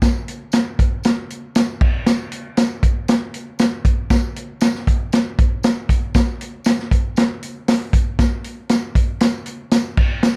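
A straight, steady 4/4 groove drives this short soul passage, taken from a longer piece and running about 10.4 seconds. A vintage acoustic drum kit sits up front, with a punchy kick, a medium-tuned snare, hi-hat and crash cymbal, all mid-forward with a rolled-off top and dark-toned cymbals. A jingly tambourine plays from start to finish, placed close yet tucked in the background. The mood is joyful and uplifting, carried entirely by these two percussion parts. A moderate studio room ambience surrounds the kit, and the overall production leans dark and warm, giving the sound a mellow, vintage character.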